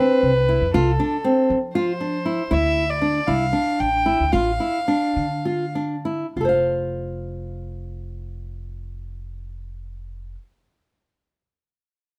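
Hopeful and shimmering, this short contemporary instrumental fragment moves in 7/8 at 189-237 BPM in eighths, in F lydian, easing into a slower pace between 2.5 and 6.4 seconds as the harmony shifts from F to Dmadd9 before settling on F5. Up front, a bright nylon-string guitar with fresh strings fingerpicks classical arpeggios, a woody, thumpy pizzicato upright bass on gut strings anchors the low end, and a single bowed violin plays a pure, floating sul tasto melody with a soft attack until 5.7 seconds. Light reverb gives the acoustic trio a gentle sense of space.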